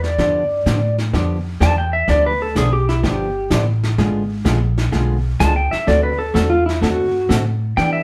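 Western swing country at 126 BPM with a cheerful, down-home lilt, this short cut from a longer piece features a twangy, fingerpicked pedal steel guitar soloing with volume swells and slide from the start, over woody, growly pizzicato upright bass, a dark, clean hollow-body jazz guitar entering at 0.2 seconds on chords moving from G9 through G#dim7 to D9, and a brushed vintage drum kit with a tight kick and rolled-off top, all played live in one room with a wet studio reverb.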